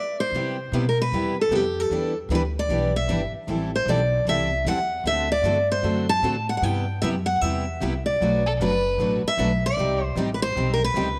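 Light reverb and studio ambience frame this playful, lively fragment of jazz manouche at 152 BPM in swung 4/4, where an up-front, warm picked steel-string acoustic guitar with finger squeak and slapback echo carries the melody, playing alone for the first 0.3 s before two bright, full-bodied dreadnought guitars pick accompaniment and a woody, thumpy pizzicato upright bass on gut strings joins over chords moving from Cmaj7 through Em7, Am7 and D7 to Bm7 and Cm, and a smooth bowed violin with vibrato and slapback echo adds a brief second line at 8.5 s.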